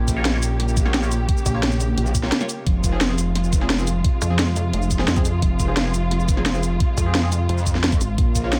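Veiled, con sordino strings with 12-bit sampler grit and a metallic, aggressive FM wobble bass, both pumping to the sidechain, open this mechanical, futuristic piece of dark technical drum and bass at 174 BPM in F minor, joined at 0.1 seconds by a knocking electronic kick and an up-front kit of cracking snare, hi-hat and shaker in a small room, while a nasal, band-passed sawtooth chord stab with phaser, lush chorus and delay sits in the background over Bbm and Fm chords, and a pulsing, heavy, detuned pluck wobble bass enters at 1.5 seconds and returns from 4.2 seconds.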